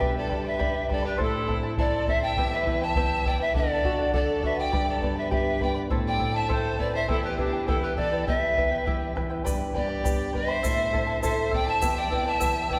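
Andean folk in an earthy, melancholic mood, this short excerpt moves at 102 BPM in 2/4, with a breathy, reedy bamboo pan flute carrying the melody over an intense, distant violin second line, shimmering double-strung charango and fingerpicked nylon-string guitar cycling through G, Am, Em and D. A deep, close bombo anchors the ensemble, and a grainy tube shaker joins at 9.5 seconds as the opening section repeats. The pan flute's soft chiff and vibrato bloom in a concert hall reverb lasting about 2.6 seconds.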